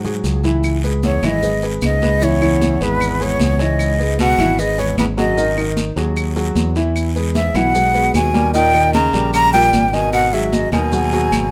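Driving and sultry, this short excerpt of Afro-Cuban jazz in G# minor moves at 152 BPM in a straight 4/4, opening on a drum fill over a concert grand piano comping with deep bass and a bright, up-front fingered electric bass, while damped, high-tuned congas and grainy maracas sit in the background, a raspy, dry guiro comes in close, and woody claves join in the background as the fill ends. At 1.0 seconds a breathy, expressive jazz flute with vibrato and lifted highs takes the melody up front, joined by a close-miked baritone saxophone playing a subtone second line low beneath it. The harmony travels from C#m7 through G#5, Emaj7 and D#7 to G#m7, all in a light reverb.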